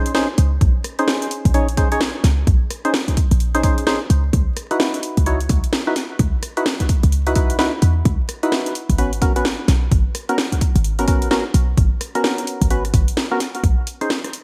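A hollow, percussive organ stab with a mellow chorused tone and a touch of vintage sampler grit and digital delay sits up front of this bouncy, moody UK garage excerpt, a two-step groove at 129 BPM in Bb phrygian with swung 16ths, moving through Bbm11, Dbm11 and Abm11 chords. Underneath, a tight, punchy 808-style bass with a fast attack and a decaying tone is soon joined by a house kit of hi-hat, rim click and cracking snare with gated reverb and a layered electronic kick, while the drop gives way to a brief break at 13.2 seconds. The bright digital production carries light reverb, digital ambience and a layer of vinyl crackle.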